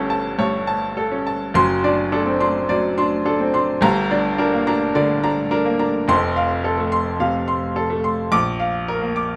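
A clear, up-front baby grand piano carries this short, stormy passage alone, its natural tone and short sustain giving the agitated G minor writing a crisp, restless edge across a range from F1 to D6. Played with rubato at around 106 BPM in 4/4, this virtuoso classical study moves from an A7 over G through D7 over F sharp to G minor, F and B-flat within 9.4 seconds. A light reverb frames the piano in a modest space, and the fragment is cut from a longer piece.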